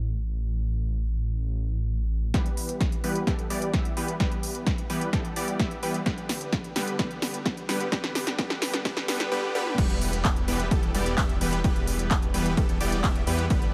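A thick, menacing detuned saw bass opens this festival progressive house excerpt alone, its saturated, beating low end pumping against the sidechain. At 2.3 seconds the bright, up-front supersaw stab takes over the riff, moving through a long filter sweep with delay over an E minor to G chord movement, while a punchy, overdriven electronic kick and a layered big-room dance kit of snare, crisp hi-hats, handclaps, toms and crash cymbal drive the build-up with an extended drum fill. The drums have the roomy character of a large room. At 9.8 seconds the drop arrives, returning to E minor as the bass re-enters beneath the pumping stab and the full kit. The euphoric, anthemic mix carries a light reverb and a high-pass filter, and the piece is cut from a longer track.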